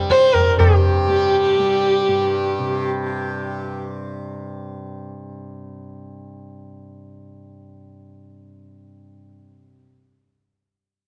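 A buzzing, shimmering tanpura drone opens this brief, introspective and solemn fragment of a longer Hindustani classical piece, set at 123 BPM in 5/4. A bowed sarangi with sympathetic strings sits up front with a smooth, gliding line full of portamento and light vibrato, while a high-tuned, close tabla sounds only until 0.8 seconds. After the sarangi stops at 3.8 seconds, the softly plucked drone carries on alone to 9.7 seconds, all in a moderate studio reverb with the worn, warbling pitch drift of old cassette tape.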